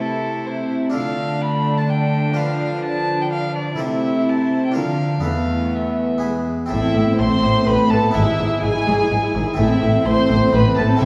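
A lone dark, nasal violin carries the melody in this dramatic, driving baroque-style concerto movement in A minor at 126 BPM in 3/4, with a chamber violin section sharing the melody in the background while a second violin section adds a gut-string second line and a light-vibrato viola section fills in behind. A bright, plucked harpsichord and a reedy cello section supply accompaniment and bass, joined by a double bass section at 6.7 s as the harmony moves between Am and E. Cut from a longer piece, the passage sits in a reverberant recital hall heard from further back in the room.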